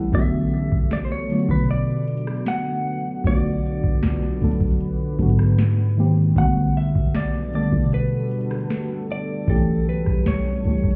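Sensual and longing, this slow contemporary R&B excerpt in B minor moves at 77 BPM in a straight 4/4, with a mellow FM electric piano up front, its round, soft tone colored by chorus and phaser, over a moody sawtooth pad that pumps beneath with its own reverb and a boomy, sine-like 808-style bass. A clean, direct-recorded electric guitar picks a compressed melody from 0.1 seconds, while an overdriven analog drum machine sets a deep kick, crisp snare, rim click and metallic hi-hats in a large room. The harmony drifts from Bm7 through G#maj9 and Gmaj9/B to A7/B at 9.5 seconds, and the whole mix sounds muffled, as if heard through a club wall.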